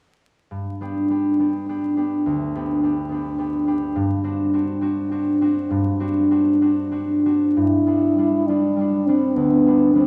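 Lyrical and tender, this short romantic classical excerpt for French horn and harp unfolds in G major at a rubato pace of roughly 62-71 BPM in 4/4. The concert harp opens alone at 0.5 seconds, its fingerpicked, ringing accompaniment sitting up front and moving from G to a D7 over G before returning to G. At 7.6 seconds the mellow French horn enters with the melody, close-miked and up front, singing in a classical style with a light vibrato. Both instruments play until the cut at 10.1 seconds. A wet recital hall reverb surrounds the duo, and the dark production carries a vinyl crackle beneath the music.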